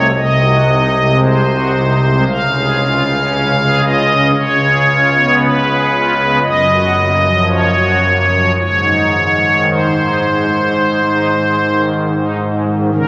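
A classical, chorale-style fragment for solo pipe organ, cut from a longer piece, moving at a slow 56 BPM in 4/4 with a flexible, rubato feel that sounds both majestic and serene. The organ's strings celeste stops are soft and shimmering, set up front with a romantic voicing that reaches from deep bass notes to the upper register through chords such as Ab7/C, Db7 and Gbmaj7. A cathedral reverb with a 6.3-second decay bathes the sound, and the piece was captured on a phone in the room, with added studio reverb and compression.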